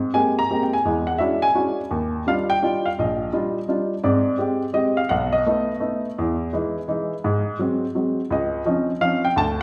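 A swung three-beat pulse at 169 BPM, with the eighth notes leaning at 65%, drives this brief jazz fragment cut from a longer piece. A baby grand piano plays alone from 0.0 to 9.6 seconds, ranging from Bb1 up to Bb5, its tone intimate and natural with short sustain and audible action noise, placed up front. The harmony moves through rich chords such as Abmaj9, E13 and Ebmaj9 in the opening passage, then shifts at 4.0 seconds to a second passage that runs through Abmaj7, B7, Emaj7 and Ab7 before settling on Dbmaj9. The mood is warm and swinging, and the tuning sits at A4 = 441 Hz. A wet recital hall reverb with a 1.4-second decay surrounds the piano, giving it the resonant air of a church or concert hall.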